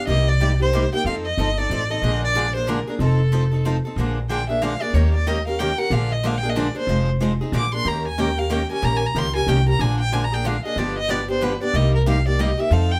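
This short excerpt of acoustic string swing in the jazz manouche style opens with a rich, smoothly bowed violin carrying the melody over two picked steel-string acoustic guitars and a woody, thumpy upright bass, all playing live in one room with moderate studio reverb. The tempo is a brisk 185 BPM in 3/4, with a light swing on the eighths that gives the piece a playful, charming lilt in Bb mixolydian. The violin, played by a single player with even vibrato, sits up front. At 4.0 seconds it moves into a solo that runs to the end of the cut. Beneath it, the two guitars share the accompaniment with a bright, fresh-string sparkle, one boxy in a parlour way and the other a concert guitar with an audible finger squeak. The pizzicato bass, on gut strings, anchors the harmony firmly up front as the chords move from Cm7 through dominant sevenths such as Bb7, Eb7 and G7.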